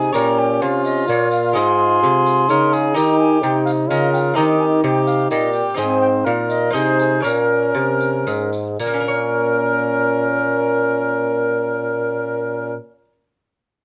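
Closely miked with a light reverb, this solemn, courtly renaissance-style consort dance in 3/4 moves at 113-128 BPM in Bb dorian, its airy, tongued baroque flute carrying the melody over a mellow cor anglais second line, a trombone with light vibrato and a delicate, fingerpicked, double-strung lute in accompaniment, and a dark bassoon bass sitting up front, while a jingly, dry tambourine plays until 9.0 s and the dance slows from 5.1 s to 8.8 s before this passage, cut from a longer piece, moves into a new section.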